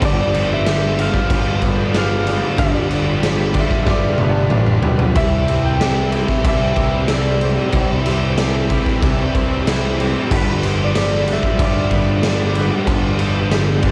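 Shoegaze-tinged dream pop rock in a blissful, wistful mood, this home cassette recording with light reverb sets a ringing, fingerpicked concert harp melody, colored by tape and analog delay, over a faint shimmer of vintage string-machine violin chords, very quiet clean twangy guitar arpeggios, a hushed double-tracked riff from a biting overdriven guitar, a background riff from a lo-fi guitar through a small old amp with reverse reverb, a thick fuzz guitar riff thickened by distortion and ensemble chorus, a growling overdriven picked bass, and an up-front, gritty garage drum kit in a pumping stone room that plays a fill from 3.9 to 5.2 seconds as the chords move from G7 to C and back to G7.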